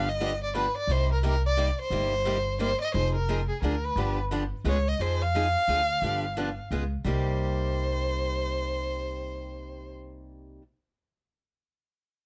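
A rich, bowed violin carries the melody from the first moment, its soft attack, vibrato and expressive portamento sitting up front over a picked steel-string parlour guitar with a bright, boxy sound and an upright bass whose pizzicato gut strings give a woody, thumpy, dark foundation. This bittersweet, virtuosic jazz manouche passage swings at 175 BPM in 3/4 in C minor, moving through minor-key changes such as Fm7, Dm7b5 and G7 in light reverb. It is cut from a longer piece, with the violin stopping at 9.9 seconds while guitar and bass continue to 10.6 seconds.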